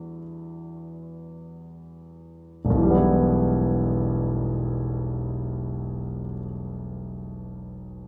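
Hazy and wistful, this brief impressionist classical fragment, cut from a longer piece, unfolds for solo concert grand piano in 9/8 with free, rubato pacing that slows down through the opening 2.6 seconds. The piano sounds warm, natural and up front, its deep bass anchoring a span from E1 up to E6, as a rich Em9 harmony settles onto a plain E minor chord at 2.6 seconds. A wet recital hall reverb surrounds the instrument, lending the passage a soft, lingering glow until it ends at 8.1 seconds.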